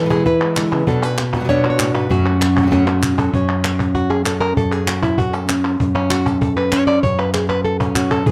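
A driving 195 BPM pulse of crisp palmas hand claps and a snappy, band-limited cajon played with soft hands propels this intense, passionate flamenco excerpt in F# minor, where an up-front fingerpicked flamenco guitar carries the melody and takes a nylon-string solo from 3.3 seconds over an F#5 chord, while a second flamenco guitar, set back with audible finger squeak and slapback echo, adds stabs through the E, Bm and F#m changes until 3.3 seconds and again at 8.3 seconds, with drum fills marking each section's close in light reverb and close, detailed sound.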